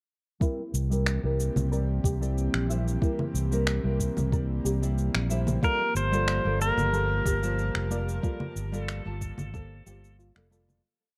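Smooth and warm, this short sunset chillout piece in G dorian moves at 92 BPM in a straight 4/4 groove, with a dark, full-bodied fingerpicked nylon-string guitar playing dotted-rhythm chords under a filter sweep and delay, an airy, breathy pad holding chorused sustained chords, and a soft, round pluck cycling an 8-step arpeggio in the background. A soft, tape-warm electronic kick and a light lounge beat of cabasa, snaps and congas sit in a small room, while a round, amped fingered electric bass stays up front with a dotted rhythm over a shift from C7 to Gm9. At 5.6 seconds a twangy, clean pedal steel guitar with volume swells and slide enters with a short motif, roughened by 12-bit sampler grit and tape echo, before the whole piece fades out from 7.4 seconds.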